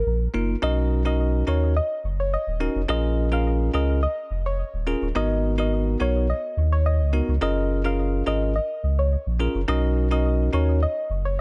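Hypnotic and sultry, this afrobeats excerpt rides a straight 4/4 groove through a cycle of lush seventh chords, anchored by a deep, thick saturated sub bass that sits up front from the first second. A bell-like tine electric piano enters at 0.3 seconds with a bright, clean, direct accompaniment, while a soft, round pluck with a gentle, dark, wave-folded tone carries the melody high above, treated with chorus and digital delay. The overall sound is dry, with little reverb.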